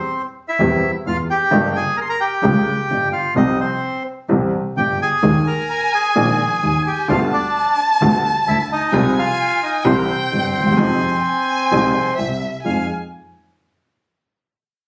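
A melancholic, sultry tango in F minor at 130 BPM, played with a rubato feel and cut from a longer piece, opens on a reedy, close-miked bandoneon carrying the melody, joined at 0.6 seconds by a dark, woody, slightly detuned upright piano and a distant, bowed double bass with vibrato and portamento. At 5.2 seconds an expressive bowed violin enters up front as a second line, its soft attack and sliding vibrato set high above the harmony as it moves through chords such as Ebsus4, G7/D and Fm7. The whole is caught on a phone in a club with moderate reverb, lending an intimate, live-room air.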